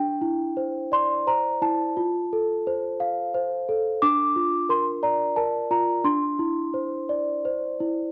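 A gently swaying 3/4 lilt at 87 BPM, played rubato, gives this brief children's lullaby its rocking, sleepy feel. A solo celesta carries the whole fragment from 0.0 to 8.1 seconds, ranging from D4 to D6 with a bell-like, delicate tone and the mellow touch of soft felt hammers. The harmony moves through Cadd9, F, Bb and back to Cadd9, lending the passage an innocent sweetness. The celesta sits up front with a vintage, band-limited character, set in a moderate recital hall reverb. The dark, warm production suits the hushed bedtime mood of this short cut from a longer piece.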